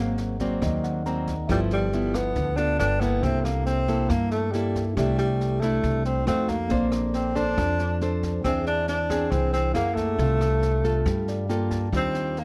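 Breezy and romantic, this bossa nova excerpt sets a breathy tenor saxophone on the melody, its subtone, soft attacks, scooped notes and vibrato sounding intimate yet distant, beside a fingerpicked classical nylon-string guitar up front. A woody, thumpy pizzicato upright bass anchors the extended jazz harmony of chords such as Ab9, G13 and Bbmaj9, while a brushed kit with a high-tuned snare, rim clicks and punchy kick enters at 0.2 seconds. A worn, slightly out-of-tune tine electric piano sits in the background, adding fills at 0.2 and 11.1 seconds, all within light reverb and a dark production.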